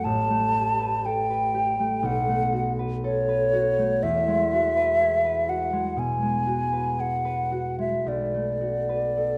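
A mellow, hollow silver concert flute carries a wistful, hazy melody with vibrato and tongued notes from the opening, sitting close and up front over a bright, ringing concert harp whose thumb-plucked accompaniment reaches down into the low register. This impressionist classical duo drifts in a rubato 4/4 at roughly 54-62 BPM, its harmony moving through Asus2, Bsus2 and Eadd9 before settling on Bm7 at 8.1 seconds. A wet recital hall reverb with a 1.4-second decay wraps the pair in soft space, and the passage breaks off as part of a longer piece.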